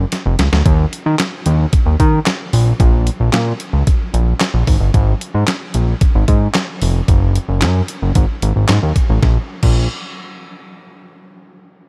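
A detuned 8-bit digital drum machine kicks in with a fill at 0.1 s. Its thumpy kick, medium-tuned snare, handclaps, hi-hat and crash cymbal sound sampler-style and tape-tinged up front, driving this funky, slick early-eighties boogie funk at 112 BPM in a straight 4/4, while a fat, nasal analog bass of detuned sawtooth and square-wave tone, with fast attack and sustained notes, ranges from F1 to Eb3 in a light reverb in this piece cut from a longer recording.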